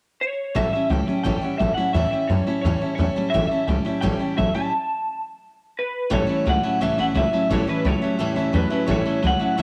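Rockabilly at a brisk 173 BPM in A mixolydian, rollicking and retro, built on an A7 chord in this cut from a longer piece, with a stop between 4.7 and 6.1 seconds before the second section. A twangy, lo-fi lead guitar through a small old amp carries the melody from 0.2 seconds with analog chorus and tape echo, joined by a bright, slightly broken-up electric riff guitar in the low register and a thumpy, woody upright bass with gut strings sitting up front. A full-bodied picked dreadnought acoustic guitar accompanies, while a warm upright piano with short sustain fills in the background of a small room with light reverb.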